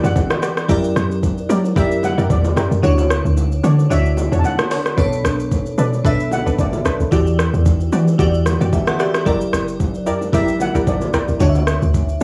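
Amapiano at 112 BPM with a gentle 16th-note swing, this late-night, deep excerpt cut from a longer piece moves through Em9, F#7b9b13, Dmaj7 and Bm7 chords. A round, dark log drum bass with a percussive FM attack anchors the low end, while an electronic afro-pop kit, re-recorded in a large room and placed up front, supplies a knocking kick, metallic hats, rim clicks and shaker, with the kick dropping out from 2.8 to 5.0 seconds. A crystalline, sparkling FM electric piano carries the harmony through chorus, phaser and cassette tape colouring, joined by punchy, warbling sawtooth chord stabs with detuned, vintage character and an analog delay. From 0.1 seconds a shimmering steel pan played with medium rubber sticks floats the melody high above, softly placed and touched by tape and delay. Ringing bongos and congas played with soft hands sit distant in the background, and the whole home cassette recording carries light reverb and a studio ambience.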